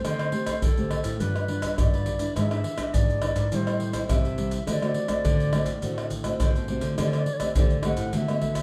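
Sunny and lively, this short cut from a longer samba and choro piece moves in a straight 4/4 groove, with an up-front percussion section of maracas, pandeiro, tamborim and a deep surdo filling a live room. Two fingerpicked nylon-string guitars play throughout, one carrying the accompaniment through chords such as D7sus4, G7, E7/G#, Am7 and D7, the other holding down a full-bodied bass line with audible finger squeak. Over them an airy wooden flute plays a second line with vibrato, a crisp attack and a slightly unsteady tone, all set in a wet studio reverb as the band plays together in one room.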